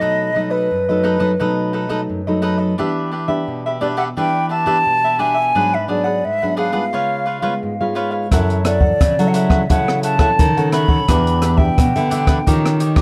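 Joyful and festive, this short samba and choro passage at 87 BPM in a straight 4/4 sets a pure, hollow concert flute melody with vibrato and tongued notes over a crisp, picked cavaquinho and a fingerpicked classical nylon-string guitar moving through B7, Em7 and F#m7 harmonies, until at 8.3 seconds a thumb-plucked nylon-string bass guitar with audible finger squeak and an up-front acoustic jazz kit with a boomy kick, hi-hat and rim click join, all wrapped in light reverb and a dark, warm production.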